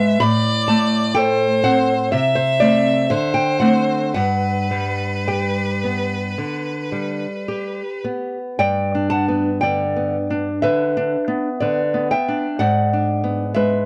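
A single bowed violin carries the melody in this lyrical, tender romantic duo, its clear, focused tone shaded with vibrato and lying between B4 and E5 until it stops at 8.0 seconds. A fingerpicked nylon-string guitar accompanies throughout, with a dark, small acoustic sound that sits slightly louder than the violin and spans G2 to B5. The guitar carries on alone after the violin stops, running to 13.9 seconds. The music is in G major at a slow, rubato 52-63 BPM in 4/4, tuned to A4 = 445 Hz. The harmony moves through Am, Am/C and D7 to G in the opening section, and the later section beginning at 8.6 seconds brings in E7/G# at 12.6 seconds. Light reverb and a warm production frame this short fragment, cut from a longer piece.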